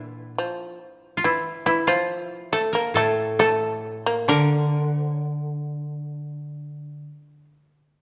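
A dry, woody koto carries the melody up front in this meditative, austere fragment of Japanese chamber music in D hirajoshi, moving rubato around 62-71 BPM in 4/4, while a bright, buzzing fretless shamisen plucked with a plectrum adds a percussive second line and a second fingerpicked koto supplies low accompaniment until 7.0 s, all set in a moderate stage reverb with a 1.8 s decay.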